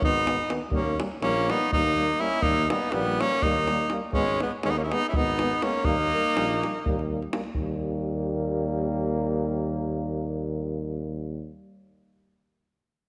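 A bright tenor saxophone with vibrato leads up front from the start of this bittersweet, restless Balkan brass band excerpt in 7/8, over a mellow, soft-attacked trumpet second line, a trombone with vibrato and a distant, roomy euphonium in the background, a warm, smooth-topped tuba bass and a tight, close davul, set in a moderate scoring-stage reverb, until the saxophone and trumpet stop at 7.1 seconds and the davul at 7.8 seconds, leaving the low brass to carry on to 11.5 seconds.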